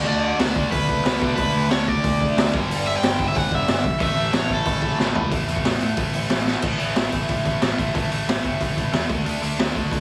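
A lightly reverberant mix drives this upbeat, energetic punk rock excerpt, with an up-front, small-room, gritty garage drum kit (boomy kick, high-tuned snare, rolled-off top) firing fills just before 5.3 s and at 6.5 s under a double-tracked tight distorted guitar riff, a growling overdriven picked bass, a cranked stack guitar melody sounding bright and high in the opening stretch, and a background high-gain double-tracked guitar riff that drops away at 5.3 s.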